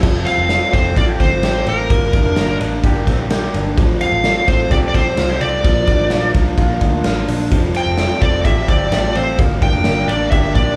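Jangly indie pop at 128 BPM in 4/4 with a straight feel, this bright, youthful excerpt sits in F major and cycles through Fadd9, Gm, Fadd9/A and Bb. A raw garage drum kit sits up front, its punchy kick, medium-tuned snare, hi-hat, ride and crash sounding saturated and gritty with a rolled-off top. Beneath it, a vintage muted picked electric bass gives a round, foam-muted low end. A twangy, slightly broken-up electric guitar through a small old amp plays arpeggios, while an overdriven semi-hollow guitar adds hollow-body accompaniment in the background. From 0.3 s a smooth overdriven lead guitar carries the melody up front, and the whole band plays live in one room with a moderate large studio reverb.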